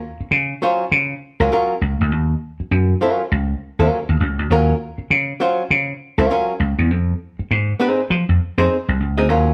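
Hypnotic and funky, this short excerpt from a longer piece settles into a 100 BPM groove in 4/4 with a 16th-note swing, set in Eb dorian. A vintage slap bass opens at 0.2 seconds, its amped, growly tone punchy and up front in the low register. An archtop guitar, miked and amplified, joins at 0.6 seconds with a dark, clean, compressed hollow-body sound, picked and sitting equally forward as accompaniment. The harmony rests on a rootless Ebm9 before moving to Fm7 at 6.9 seconds. The two players sound like a band performing live together in a stone room, with a moderate reverb giving the space a natural depth.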